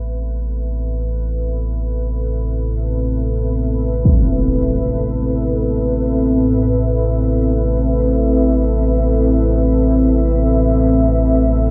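In free time, this dark ambient drone in A minor hangs on a single Amadd9 chord, unsettling and desolate, as a deep rumbling drone from A1 to A2 sits up front, ominous and wave-folded, beside a moody, detuned pad holding sustained chords from C4 to E5 with chorus and a vintage warble. A quartz singing bowl rings very quietly on E5 throughout, pure and meditative with slow beating, while a huge, dark, low-passed impact lands once at 4.1 seconds. The whole is bathed in a huge ambient reverb and the worn, drifting pitch of old cassette tape, in this passage cut from a longer piece.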